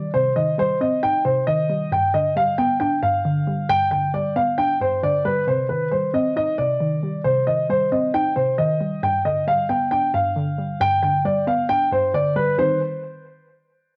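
A worn, home-recorded cassette sound with light reverb frames this melancholic, hard-hitting hip hop cut, which moves in a half-time feel. A dark concert grand piano carries the melody up front, its mellow tone and deep bass colored by tape and trailed by an analog delay. Beneath it, a warbly, dusty pluck plays the accompaniment: a nasal, lo-fi synth voice mixing triangle and sawtooth shades, with a filter sweep, a fast attack and a decaying tail, thickened by chorus and cassette tape. Both parts play from the opening until 12.8 seconds over a harmony that shifts between Cm and G. It is cut from a longer piece.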